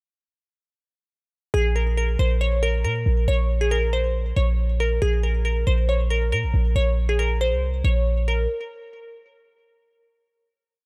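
A glassy wavetable pluck carries the melody of this short trap piece, a crystalline, digital loop repeated like a sample, its fast attack and quick decay shaped by a filter sweep, ring modulation and a chorus effect that adds shimmer to its bright tone. Beneath it, an 808-style bass lays down long, boomy sub-bass notes with pitch slides, deep and mellow, sitting up front in the mix. Both parts enter together at 1.5 seconds and play through the single hook until 8.5 seconds, over a single Bb minor chord. The half-time feel gives the track a slow, heavy sway, and the mood lands somewhere between melancholic and menacing. The production is dark and warm, with a dry, close sound.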